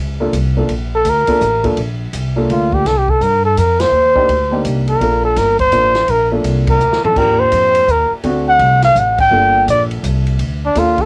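A swinging 3/4 pulse at 167 BPM drives this moody, cool slice of small-group jazz in G minor, cut from a longer piece and captured at home on cassette in a snug booth. The upright bass opens at 0.0 s, plucked and up front with a woody, growly tone from its steel strings, and the baby grand piano follows with intimate, short-sustained comping where the action noise can be heard. An acoustic drum kit in a small room adds dark cymbals, a medium-tuned snare and a boomy kick across crash, hi-hat, ride and toms, with a brief fill at 6.8 s. The mellow trumpet takes the solo melody from 0.9 s, sitting up front with vibrato and scooped notes in a jazz style. The band hits shared accents over a progression that moves from a rootless Gm7 through Cm7, Ebmaj7 and D7 back to Gm7, and the tape lends the piano, drums and trumpet a worn, homespun character.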